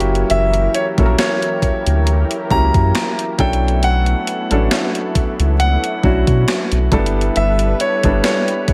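A lightly swung groove from a gated 80s digital drum machine, with a thumpy kick and a gated-reverb snare, sets a moody, late-night contemporary R&B feel in this short cut from a longer piece. A round, deep analog bass and a soft, felt-muted upright piano sit up front, while a lush, warbling unison pad with chorus holds sustained chords in the background as the harmony moves from F#7b9 to Bm11 to G69. From 0.3 seconds, a bright, brilliant concert grand piano carries the melody through an analog delay, in a dry but echo-heavy mix.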